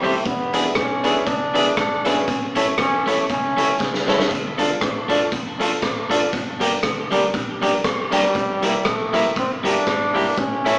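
Driving and mischievous, this ska excerpt moves at 119 BPM in 4/4 with a light swing, as a brilliant trombone carries the melody with light vibrato, resting between 4.0 and 8.1 seconds before returning, over chords running from E7 through A, Dm and Gm to Edim. An electric guitar at the edge of break-up, dressed in spring reverb and tape echo, accompanies beside woody upright piano stabs with audible action noise, while a round hollow-body short-scale fingered electric bass sits in the background. Up front, a raw, gritty garage drum kit with a punchy kick and rolled-off top plays a fill around 3.8 seconds, and the whole band sounds live in one room through a small speaker with a wet studio reverb.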